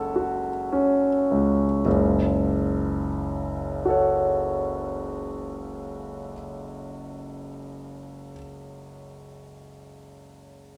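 Set in a moderate recital-hall reverb, this fragment of mysterious, nocturnal impressionist classical music features an intimate, up-front solo concert grand piano with deep bass, long sustain and audible action noise, playing a rubato 30 BPM in F# minor, slowing over an F#m7 chord in its first 1.8 seconds before settling onto F#m for the rest of its 10.8-second span.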